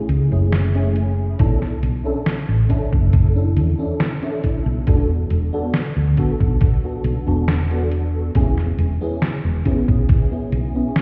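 Vaporwave at a slow 69 BPM in B dorian, this hazy, nostalgic fragment pairs a lush, dreamy FM electric piano with a soft pad layer, its phaser, chorus, 12-bit grit and analog delay drifting through chords from F#m7 to Bm11, E7sus4 and a rootless Amaj9/E, over a dark, round, punchy hollow-body bass with tube saturation, a detuned, tape-warm 8-bit drum machine's hi-hat and medium-tuned snare, and a thumpy electronic kick that sits up front from 1.4 seconds, all heard muffled as if through a wall in a stone room.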